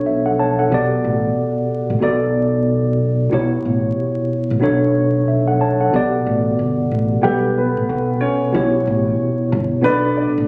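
A worn, slightly out-of-tune tine electric piano opens this short cut from a longer boom-bap hip-hop piece, sitting up front with a cassette-tape colour and filtering at both ends of its range while it lays out chords in B minor. Beneath it from the very first moment, a fingered electric bass adds a round, punchy low end, moving between Bm7, A-chord and Gmaj9 harmonies at a swung 92 BPM in 4/4. At 7.2 seconds a dark upright piano enters with the melody, its woody, mellow tone carried on a tape echo and trimmed by filtering, as the harmony shifts to Gmaj7 and A7 before settling back on Bm7. The mood is dark and tough. The sound carries light reverb in a small room, vinyl crackle and compression, with the grainy closeness of a phone recording.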